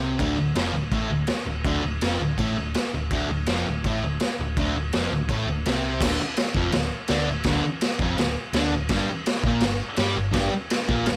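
A bright, double-tracked fuzz guitar drives this raw, rowdy garage rock excerpt, picking out a compressed, distorted riff that moves from a D5 power chord into Dm at 6.0 seconds and then Gm. Underneath, a dark, round hollow-body short-scale bass adds tube-saturated weight, while a gritty acoustic drum kit in a small room crashes in at 0.2 seconds with a punchy kick, medium-tuned snare and crash cymbal, sitting up front with a rolled-off top. A light reverb lends the whole trio a scrappy, live-in-the-garage feel.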